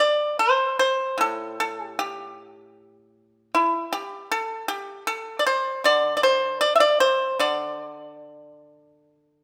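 Light reverb frames a dry, percussive pipa placed up front, its acoustic tone plucked with fingerpicks. This serene, flowing fragment of a longer Chinese traditional piece unfolds in a free rubato around 77 BPM in 4/4, set in the D shang mode with tuning at A4 = 445 Hz. The pipa plays alone for the full 9.4 seconds, reaching from A2 up to E5.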